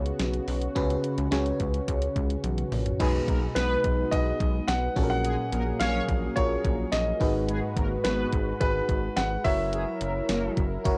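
This short passage of glossy, romantic 1980s-style pop opens on a glassy FM electric piano with a bell-like attack and a vintage warble, set over a smooth, detuned analog pad that sits in the background and a rubbery, bouncy square-wave bass placed up front. A clean 12-bit drum machine joins almost at once with a thumpy kick, fat snare, hi-hat, tambourine, crash and toms, and a drum fill at 2.4 seconds leads into the second section. From 3.0 seconds, mellow synth brass adds round, evolving stabs coloured by chorus, phaser, vibrato and tape echo. Soon after, a clear, polished baby grand piano carries the melody up front in a high register, trailed by tape echo and shimmer reverb. The chords move through suspended, sixth, ninth and seventh colours under a moderate room sound, and a cassette tape character on most parts lends the home recording a tape grain.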